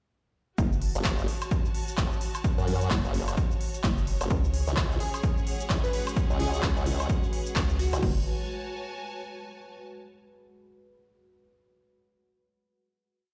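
Heard through a big sound system in a bare stone room with light reverb, this aggressive, gritty bass house piece in F# minor drives at 129 BPM with a swung sixteenth feel, moving from F#m to C#sus4 through a drop that resolves onto a final chord at 8.0 seconds. An overdriven, punchy four-on-the-floor kick with crash leads a layered drum kit of crisp hats, handclaps and woodblock, while a grainy egg shaker sits in the background and a hollow, bouncy FM bass plays chopped phrases beside an up-front, formant-filtered wobble bass, both pumping against the kick. Distant, biting strings hold slowly shifting chords throughout, and from 5.0 seconds a deep, moody pad and a catchy, detuned plucky lead with lush chorus and tape echo join in.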